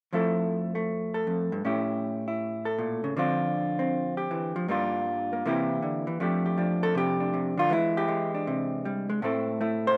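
Warm and swinging, this short solo jazz passage, cut from a longer piece, moves at a brisk 158 BPM in 4/4 with a lilting swung eighth-note feel in F major, tuned slightly sharp to A4 = 445 Hz. A vintage electric hollow-body jazz guitar carries everything alone from 0.1 to 10.0 seconds, its clean, picked tone leaning dark and sitting up front in the mix, ranging from F2 up to C5. The harmony opens on Fmaj7 and travels through A7, Dm7, Gm7 and C7 before a new section arrives at 6.2 seconds with F69, a tense E7alt and a closing turn to Am. Light reverb gives the guitar a touch of space, while the rough home-demo mix keeps the sound intimate and unpolished.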